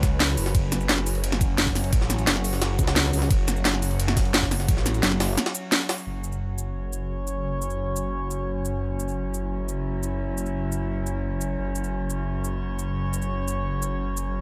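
Dark technical drum and bass at 174 BPM, this futuristic, aggressive excerpt opens on a drop where a knocking electronic kick (until 4.8 s) and an up-front kit with a cracking snare and crisp hats drive forward, while a gritty, pitched-up, tape-warm jungle sampler kit with high-passed cymbals, hats and high-tuned snare sits in the background until 6.0 s. A swirling, thick detuned saw bass through phaser and overdrive holds the low end between F#1 and C#2, joined from 2.8 to 5.4 s by a metallic, saturated wobble bass with chorus, and above them an eerie, inharmonic ring-modulated drone plays sustained chords with chorus, reverb and sidechain pumping. After a brief break at 5.4 s, the second section brings a filter sweep on the drone, heard through a digital ambience.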